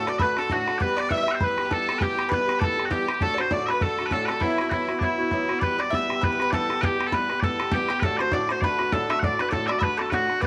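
Swung eighths drive this spirited Celtic reel in 4/4, with a damped, tight bodhran keeping the pulse beneath a piercing, bright bagpipe melody held up front throughout. A round, double-strung mandolin sits in the background as a second line, joined for the first 5.3 seconds by a single bowed fiddle with light vibrato and a smooth top, which returns briefly at the very end, while a fingerpicked swing-style acoustic guitar, finger squeaks audible, carries the accompaniment. Moderate echo-chamber reverb and small-room ambience frame this short cut from a longer piece, which repeats one section over chords in E minor.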